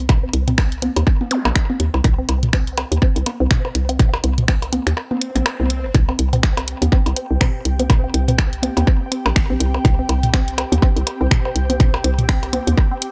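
Sparse and quirky, this echo-heavy minimal techno excerpt at 123 BPM in 4/4 with a 16th-note swing rides a punchy, up-front electronic kick, a bouncy, hollow knocking FM bass with sidechain pumping, finger snaps and hi-hat from a house drum kit steeped in tape echo, overdriven electronic toms and percussion blips trailing dub echo, and a juicy, squelchy resonant blip pluck riff around C4 run through phaser, pumping and dub echo with a filter sweep. An electronic zap flickers early on, and a swell marks a brief break before the drop at 5.9 s, where an ethereal airy pad with ensemble chorus, phaser and its own reverb enters at 6.4 s.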